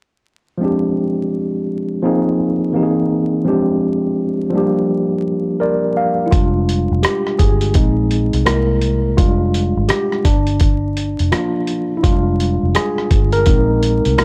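A dry, gritty recording dusted with vinyl crackle carries this nostalgic, melancholic lo-fi hip hop cut, swung on the sixteenths. A worn, slightly out-of-tune tine electric piano, lightly overdriven and softened by cassette tape and a low-pass filter, opens alone on its chords, plays a short fill from 5.3 seconds, then takes a solo at 6.3 seconds. There a foam-muted, round fingered electric bass and a compressed, sampler-style soul kit of thumpy kick, hi-hat and rim click join, the drums sitting up front.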